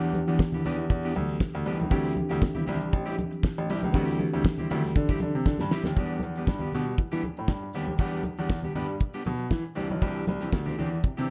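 Celebratory and danceable, this short disco cut rides a dry, up-front 70s drum kit with a fat snare and tight kick, a bright grand piano with audible action noise playing the bass line, twangy, slightly broken-up electric guitar, and ringing congas tucked in the background, while a worn, slightly out-of-tune electric piano with light overdrive sits behind the band until 6.0 s, where a drum fill leads from the Em7 and D9sus4 groove into a section moving from Em7 to Cadd9, all within a dark, close-sounding production.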